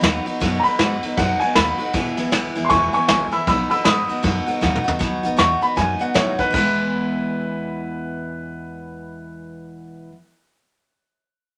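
A woody, long-sustaining upright piano carries the melody in this upbeat, rollicking rockabilly piece in E major at a swung 156 BPM, over a bright, full-bodied picked steel-string acoustic guitar up front, a dark, thumpy pizzicato upright bass on gut strings, and a soft brush kit with a tight kick that plays a fill at 4.6 seconds and drops out at 6.7 seconds, the whole set in a moderate studio reverb.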